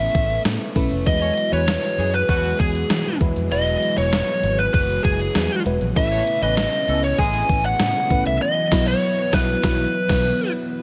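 A biting, overdriven lead guitar sits up front carrying the melody through tape echo in this uplifting, nostalgic 1980s-style pop excerpt in E major at 98 BPM. Beneath it, a lush, dreamy FM electric piano with a soft pad layer shimmers with chorus and phaser. A round, foam-muted fingered bass and a thumpy, up-front 12-bit drum machine drive the groove, with gated reverb on the kit. In the background sit a bright, double-tracked semi-hollow guitar, sustained sawtooth string-machine cellos and a tight horn section that stabs from 1.2 to 7.4 seconds before the band hits an accent at 8.4 seconds.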